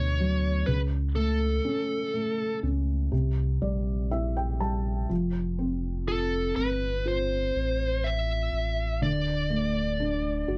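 A dry, close 1970s-style studio sound with a faint mains hum frames this hopeful, heartfelt pop ballad fragment, moving at 61 BPM in a straight 4/4 through chords from Bm to a closing D. An up-front, smooth overdriven electric guitar carries the picked melody with a slapback echo, while a felt-muted upright piano, dark and intimate with audible action noise and short sustain, supplies the accompaniment and plays a fill from 3.1 to 5.1 seconds. Underneath, a deep sine-and-triangle sub bass with an added octave holds the low end, full and sustained.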